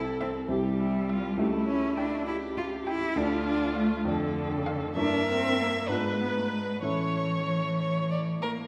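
A close, expressive cello with soft-attack portamento carries the second line up front while a focused, vibrato violin sings the melody from 0.2 seconds over a smooth, even viola and a vintage-toned grand piano with long sustain, giving this urgent, stormy excerpt of a quick classical-period piano quartet movement in 6/8 at 66 BPM an uneven, rubato pulse, all set in a wet scoring-stage reverb as the harmony moves from C through D minor and a diminished chord to close on A at 6.8 seconds.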